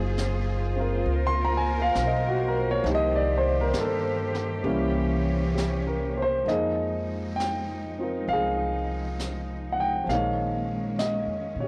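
An up-front baby grand piano, natural and intimate with its action noise audible, accompanies this melancholic swung jazz ballad fragment alongside the smooth, vibrato-rich sustained chords of a bowed cello section, a woody pizzicato upright bass, and a brushed drum kit with a high-tuned snare and hi-hat that joins at 0.2 s with a rolled-off cassette tone, set in light reverb on a home cassette recording.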